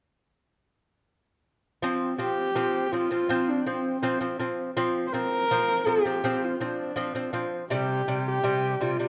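A fingerpicked lute opens at 1.8 seconds with delicate arpeggios on doubled nylon strings, joined at 2.2 seconds by a dark, husky horsehead fiddle carrying the melody with vibrato, portamento and a soft-attacked bowed tone. This short cut from a longer piece of Mongolian folk music has a galloping yet vast mood in a straight 4/4, with both instruments placed up front. A moderate recital-hall reverb lends the pairing an open sense of space.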